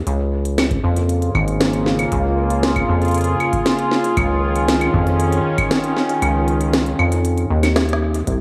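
An intricate, eerie IDM excerpt in a straight 4/4 groove, cut from a longer piece and moving from Bbm7 to Dbadd9. Up front, a rubbery acid bass built on a square wave plucks low with a fast attack and a resonant filter, sounding dark and saturated as each note decays. Above it, an analog pad of detuned sawtooth and sine tones holds soft, sustained chords, its smooth, warbling, wave-folded sound colored by chorus and vintage 12-bit sampler grit. The drum kit is produced and overdriven, placing woody snare, crisp hi-hats and claves up front with dub echo trailing behind, while a dry, deep analog kick enters at 0.7 seconds. The kick drops out at 6.2 seconds, and a drum fill arrives at 7.8 seconds. Moderate spring reverb and studio ambience give the whole mix an echo-heavy sense of space.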